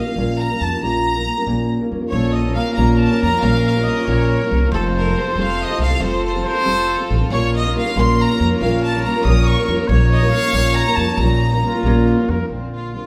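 In a straight 6/8 at 92 BPM, this festive, romantic mariachi excerpt in Bb harmonic minor sets a rich, biting violin section on the melody over up-front thumb-plucked nylon-string guitar and woody, thumpy pizzicato upright bass, with a clear, soft-attack trumpet adding a second line and a background violin section holding sustained chords from 2.1 seconds, all played live in one room with a wet studio reverb as the harmony moves from Bbm through F to close on Bbadd9.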